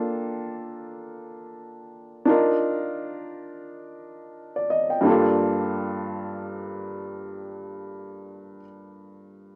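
Hip hop in G minor, this short excerpt from a longer piece moves in free time with a gritty, reflective mood. A dark upright piano carries the accompaniment throughout, spanning G2 to G5 with a woody, vintage tone that sits up front. Filtering trims both the lows and highs of the piano, keeping its sound mellow and smooth. The harmony drifts from Bbmaj7 to Ebmaj7sus2/D, then settles on Gm9 at 5.0 seconds as a second section begins. A moderate plate reverb and a small room ambience surround the playing, and the rough home demo mix adds to its unpolished character.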